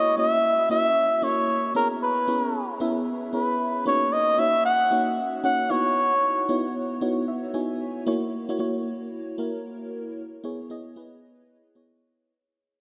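R&B at 114 BPM with a swung 16th-note feel in C# dorian, this slick, punchy piece moves through F#7, C#m7, D#m7 and C#m11. A veiled, breathy cup-muted trumpet carries the melody with light vibrato and delay until 6.8 seconds, over a lush, dark FM electric piano layered with a soft pad and treated with chorus. The electric piano plays a fill at 7.0 seconds and continues alone as the piece fades out from 8.1 seconds, all bathed in a huge, dreamy ambient reverb.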